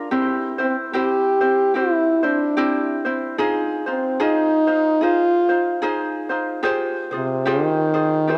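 A soft-attack French horn sings a languid, dreamy classical-style melody up front with a cassette-tape tint, entering at 0.6 seconds over a bright, light fingerpicked ukulele in this short Hawaiian excerpt at 74 BPM with a gentle swing in F dorian, moving from C to Fm7 to Fmadd9 inside a lush, wet hall reverb on a home cassette recording.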